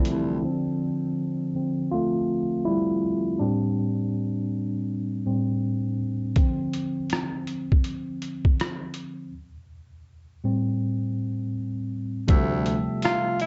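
Swung sixteenths in 4/4 carry this hazy, nostalgic lo-fi hip hop fragment, where a worn, slightly out-of-tune tine electric piano plays alone up front from 0.4 seconds until muffled sampler-style drums with a thumpy kick, hi-hat and rim click return at 6.4 seconds; at 12.3 seconds a breathy, whispered baritone saxophone bass and a deep, detuned analog pad in the background come back, before a mellow tenor saxophone with scooped notes and a faint, jingly tambourine enter near the close.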